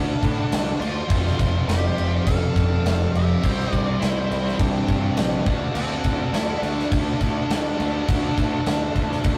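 A rough rehearsal-room recording with a moderate booth ambience and warm saturation carries this heavy, aggressive hard rock passage, cut from a longer piece, in D minor at 103 BPM in a straight 4/4. The big acoustic drum kit enters at 0.2 s and sits up front, with a punchy kick, a medium-tuned snare and bright crash cymbals ringing in a big room, while a bright, fuzz-laden picked bass growls beneath it. Three distorted guitars carry the riff: a dark, sludgy overdriven one in the background, a tight, bright one kept very quiet, and a double-tracked, compressed one that is barely audible. Over them a bluesy overdriven lead guitar plays the melody, shadowed by a darker octave-fuzz lead on a second line, both set back in the mix. A very quiet tonewheel organ holds smooth, clean sustained chords, colored by key click, chorus vibrato and a rotary speaker, as the harmony moves from Dm to F to C and back to Dm.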